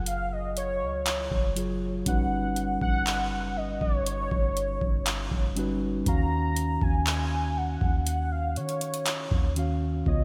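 A slow, straight 4/4 groove comes from a booming analog drum machine that joins at 0.1 s, with a deep kick, metallic hi-hats and handclaps, all bathed in gated reverb and sitting up front with a small-room character. This moody, sensual piece of contemporary R&B is a short fragment lifted from a longer work. Beneath it, a soft 808-style bass offers round, sine-like notes that strike quickly, decay, and keep the low end dark. A mellow tine electric piano supplies clean accompaniment played through built-in speakers, moving from Gbmaj9 through Eb7alt to settle on Ebm9 at 6.1 s. Above, a velvety synth lead carries the melody with a detuned sawtooth-and-triangle unison, sustained tones, vibrato, and a shimmer of chorus and digital delay. The bright 1980s-style digital production adds only light reverb, giving the whole thing a smooth, late-night glow.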